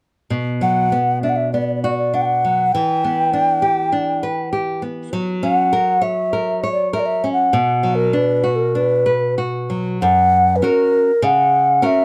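A small, bright nylon-string guitar, fingerpicked and up front, opens this mournful, passionate fado-style ballad excerpt at 0.3 s in a loose rubato feel, joined at 0.6 s by a breathy, mellow clay ocarina that carries the melody with vibrato, tongued notes and rolled-off highs over chords moving from Bm through Em7 and F#7 back to Bm before settling on F# at 10.0 s, all set in light reverb with a dark production.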